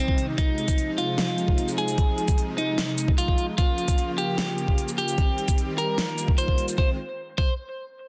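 A bright, twangy electric guitar at the edge of break-up carries the melody up front, its picked, scooped tone trailing a dub echo through this heavy, chaotic stretch of wobble dubstep cut from a longer piece. Beneath it, huge, lush supersaw chords in detuned sawtooth unison sustain with a fast attack and a moving notch, pumping against the sidechain until they drop away at 7.0 seconds. A knocking, layered electronic kick sits up front and drives the half-time feel. A big-room dance kit adds a huge snare, crisp hats and shaker, its tape-warm, produced sound matching the kick. The harmony moves from Fm7 through Bbm, Cm and Ebadd9 before returning to Fm7 as a brief new section begins at 6.8 seconds. Light reverb surrounds a dense, heavily limited modern master.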